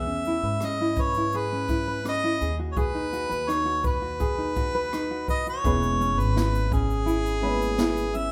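Acoustic pop at 84 BPM in E major with a sunny, carefree mood, this short cut features a smooth, up-front harmonica melody over light, thumb-plucked tenor ukulele, a woody, growly pizzicato upright bass and a brushed jazz kit with a boomy kick, high-tuned snare, rim click and shaker, joined at 5.6 s by a dark, boxy upright piano in the background, the whole band sitting in a moderate large-studio reverb that gives the feel of musicians playing live in one room.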